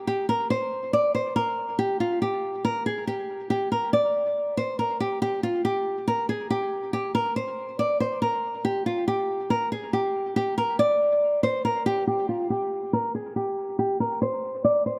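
This cold, tense hip hop passage, cut from a longer piece, moves with a half-time feel and features a fingerpicked nylon-string guitar playing solo from 0.0 to 15.0 s, spanning F4 to D5. The guitar sounds acoustic, small and up front, its tone softened by a low-pass filter and trailed by a dub echo. A light reverb and studio ambience surround it in an echo-heavy mix, with a new section arriving at 12.1 s.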